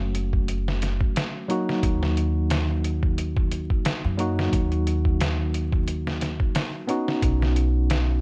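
Trip hop excerpt at 89 BPM with a dark, hypnotic mood, where a pitched-down, muffled sampler-style drum kit with a thumpy kick and studio reverb swings lightly under a woody pizzicato upright bass and a clean tine electric piano treated with tremolo, tape echo and a filter sweep, moving from F#m to D#m and then Badd9 at 7.2 seconds over a bed of vinyl crackle.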